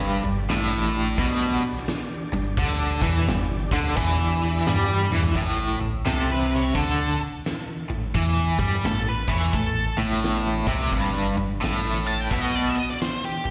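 A cranked stack guitar sits up front, bright and double-tracked, picking an overdriven riff with tremolo and slapback echo through this gritty, driving blues rock and southern rock excerpt at 86 BPM in 4/4 with a swung eighth-note feel. Beneath it, a deep sub bass with a pitch-drop attack gives each note a punchy, sustained thump, while a huge arena drum kit, with a fat snare and punchy kick in a big room, enters at 0.5 seconds. In the background, an overdriven tonewheel organ holds thick sustained chords with key click, chorus vibrato and a slow rotary speaker, dropping out after the opening section. A drum fill at 5.0 seconds leads into a solo from a dark octave-fuzz lead guitar that carries the melody from 6.1 seconds, its distortion trailed by slapback echo and digital delay. The harmony moves between G5 and A5 power chords, and the whole excerpt sounds like a live gig heard through the venue's PA, filling a recital-hall reverb.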